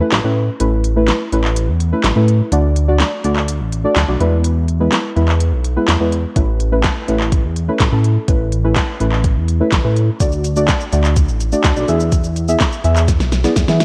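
A worn, warbling cassette sheen with light reverb and gently drifting pitch colours this upbeat, summery dance-pop excerpt in A major at 125 BPM, a short cut from a longer piece. Deep, mellow chord stabs with detuned, chorused softness pump alongside a glossy, retro synth bass built from pulse and sawtooth tones with a moving notch, both breathing under sidechain as the harmony cycles through Aadd9, D and E. An up-front, tape-warm R&B drum kit of soft kick, fat snare, smooth hats, handclaps and shaker drives the groove, closing with a drum fill at 13.1 seconds.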